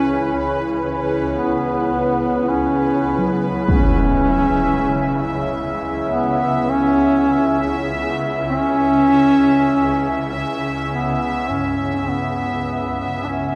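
A mellow, up-front duduk sings a folk-style solo with vibrato and scooped notes, trailed by delay, over a cavernous dark ambient drone bathed in huge reverb. Around it sit a deep, moody sawtooth pad with chorus, a swarming, detuned, wave-folded low drone that slowly fades in, and a bright, bubbling resonant texture of random filter steps. From 3.2 seconds, round bronze gongs add soft, beating arpeggios in the background, a huge impact strikes at 3.7 seconds, and this cut from a longer piece fades out from 10.1 seconds.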